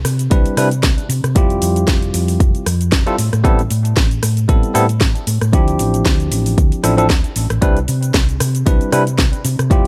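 A 115 BPM groove in 4/4 drives this sunny, feel-good nu-disco excerpt, with a gentle swing on the sixteenths giving it a loose, easy bounce. A punchy electronic kick sits up front from 0.3 seconds, layered with a house drum kit of cracking snare, metallic hi-hats, cabasa and rim click. Underneath, a hollow-body short-scale electric bass played with the fingers adds a dark, round tone. A bell-like tine electric piano carries the chords in C major, its clean, direct sound pumping against the kick and trailing analog delay echoes. The harmony moves from Cmaj7 through Fmaj7, Am7 and Dm9 before returning to Cmaj7, in a dry, close mix cut from a longer track.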